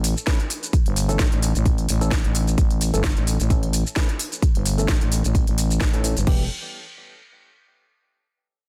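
This dry, dense and heavily limited modern mix carries little reverb, and the short cut from a longer bass house track comes across as aggressive and bouncy at 130 BPM in 4/4, with a 55% swing on the 16ths, in E dorian tuned to A4 = 438 Hz. A growling, thick FM bass sits up front between E1 and A1 with a fast attack and sustained notes, pumping against the sidechain as a filter sweep moves across it. A garage drum kit brings a cracking snare, crisp hi-hats, shaker and crash cymbal, with a tape-warm character from being re-recorded in a large room. At 0.3 seconds a punchy, layered electronic kick arrives along with a hollow, wave-folded organ-like stab that ranges from E3 to B4, its dark, decaying hits treated with chorus, delay, sidechain pumping and its own filter sweep. The harmony rests on A before shifting to Em at 6.3 seconds, opening a brief new passage.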